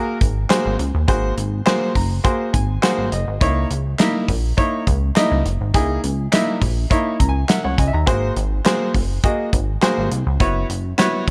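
Early-eighties boogie funk with a late-night, funky mood, this short excerpt moves in a straight 4/4 groove. A damped 70s drum kit sits up front with handclaps, hi-hat, a tight kick and a medium-tuned snare, its dark, rolled-off top treated with gated reverb. Underneath, a glossy, retro chorused synth bass blends pulse-wave and sawtooth tones with pulse-width modulation, a moving notch and a quick filter pluck, holding mellow, sustained low notes. A clear baby grand piano with short sustain carries the accompaniment and breaks into fills at 1.7 and 6.9 seconds. The harmony cycles through G#9, C#m69 and back, closing on an F#7sus4, all captured in a nearly reverb-free room.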